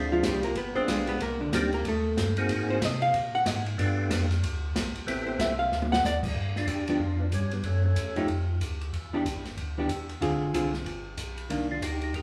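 This soul jazz organ trio swings at 187 BPM in G mixolydian, with a bluesy, greasy mood, in a passage cut from a longer piece. A mellow, round tonewheel organ carries the melody with third-harmonic percussion, key click, chorus vibrato and a slow rotary speaker, dropping out at 8.3 seconds before a brief return near the close. A second tonewheel organ voice, piping and scooped through its own slow rotary speaker, holds down the bass from start to finish. Up front, a dark, clean, picked hollow-body archtop guitar takes a solo through the first 6.3 seconds and otherwise supplies accompaniment. An airy, polished acoustic drum kit with dark cymbals, a medium-tuned snare and a boomy kick adds a short fill just before the second section. The band sounds live in one room, bathed in a wet large studio reverb.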